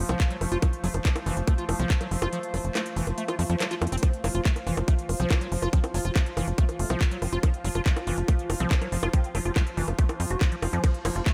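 A tight, up-front electronic kick anchors this hypnotic, alien psychedelic trance excerpt, dropping out from 2.3 to 4.0 seconds around a drum fill while a layered kit of crisp hi-hats, handclaps, bongos and ride cymbal keeps going. Beneath it, a tight, nasal sequencer bass drives alongside a squelchy, mellow acid bass riff colored by chorus, cassette-tape grit, digital delay and sidechain pumping. In the background, a bright, pulsing gated texture holds sustained chords beside a dark, warbling lo-fi pad, and a very quiet, juicy blip pluck with ring modulation and phaser joins at 5.2 seconds.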